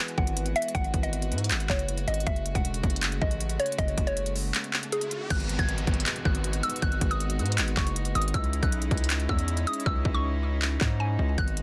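Trap-style hip hop at 158 BPM in a half-time feel, eerie and hard-hitting, in G# phrygian, moving through G#m7, F#madd9 and C#madd9 in this cut from a longer piece. A woody, round mallet-like synth pluck carries the melody with chorus, phaser and digital delay over soft, floating chamber strings holding distant sustained chords, while an up-front trap kit of hard-clipped kick, crisp hi-hats, handclaps and crash drives against a heavy, saturated 808-style bass. A riser leads into the second section at 5.3 seconds with the kick dropping out just before, the hi-hats cut out from 9.9 to 11.4 seconds, and the dry, dense master sounds heavily limited.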